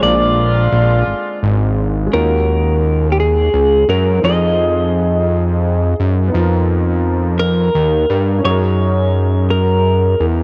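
A dry home cassette recording with its highs rolled off sets a hazy, intimate tone for this sensual, slow R&B fragment in 6/8 at 57 BPM, moving through chords like Ebm11, G7alt and Gb69. A fat, detuned sawtooth analog bass with a filter sweep sits up front, beneath a clean, compressed electric guitar melody colored by phaser and a clear concert grand piano with deep bass voicing the accompaniment. A tight, vintage jazz-style horn section with light vibrato adds warm stabs only until 1.7 seconds.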